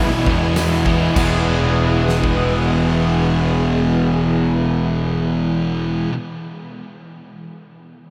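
Soaked in a vast ambient reverb, this wistful, dreamy shoegaze and dream pop fragment in E major drifts in free time and slows over its first 1.2 seconds: a vintage organ-like string ensemble with ensemble chorus holds soft sustained chords on Emaj7, a very quiet twangy clean guitar picks arpeggios, and a background wall of riffing guitars layers a double-tracked overdriven part, a picked guitar trailed by reverse reverb, and a thick fuzz guitar with distortion and subtle chorus over a growly fuzz bass, while a huge arena drum kit with a fat snare, punchy kick and bright cymbals crashes in at 0.3 seconds and stops by 2.4 seconds, and a jingly tambourine adds a faint shimmer at 0.6 seconds.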